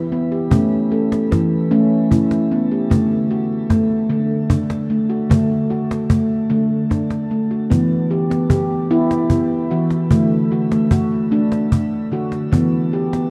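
A ringing, nitrided-steel handpan opens at 0.0 s with up-front arpeggios played with the fingertips, its vintage, band-limited tone trailing a tape echo, and a snappy, snare-rattling cajon joins close behind at 0.5 s with hard hands. This meditative, hypnotic world piece moves slowly in 6/8 at 50 BPM in dotted quarters with a straight feel, tuned to A4 = 441 Hz, cycling through Em, A and D before a second passage at 7.7 s returns to Em and D. The sound sits in a wet echo-chamber reverb with the worn, warbling pitch drift of old cassette tape, and the excerpt is cut from a longer piece.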